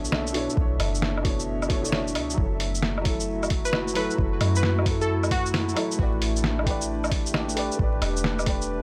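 A rainy, ghostly future garage cut at 133 BPM with a swung 16th feel opens on a woody upright piano with tape echo over a moody, nasal analog pad with chorus and 12-bit grit, a round, sine-like 808-style bass, and a muffled, pitched-down sampler drum kit of hi-hat, shaker, snare and woodblock placed up front, with the piano, pad and bass all pumping against the sidechain. A soft, overdriven electronic kick joins at 0.6 seconds, and a glassy, crystalline wavetable pluck with chorus and tape echo carries a brief melody from 3.7 to 5.7 seconds over chords moving from Bm11 to F#m7 to A9sus4. The sound is dry and gritty, with transformer saturation, vinyl crackle and a digital ambience.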